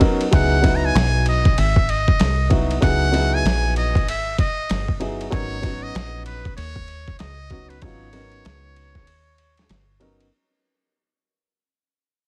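A heavily compressed, radio-like sound in a digital ambience frames this mellow, smoky jazz-hop cut from a longer piece at 96 BPM with a 16th-note swing, where a gritty, overdriven sampler-style drum kit with a thumpy kick sits up front beside a woody upright piano voicing C#m11 and then G#m11, a round, dark fingered electric bass anchors the low end, and a buzzy, breathy trumpet with a metal mute and analog delay carries a solo jazz melody with light vibrato and scooped notes from 0.4 to 9.7 seconds, all fading out across the passage with a break from 9.1 seconds.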